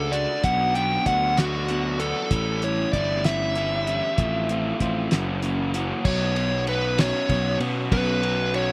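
A smooth overdriven lead guitar carries the melody over a crunchy, double-tracked guitar riff with slapback echo and a punchy fuzz bass, while a cloth-damped, thuddy drum kit with dark cymbals, a fat snare and a tight kick joins at 0.1 s. This upbeat, jangly indie rock fragment moves at 64 BPM in 6/8, passing through Bm, A7, F/A and F#7 before a new section opens on Bsus2 at 6.0 s. The sound is dry and outdoor, with little reverb, and the guitars and bass sit up front.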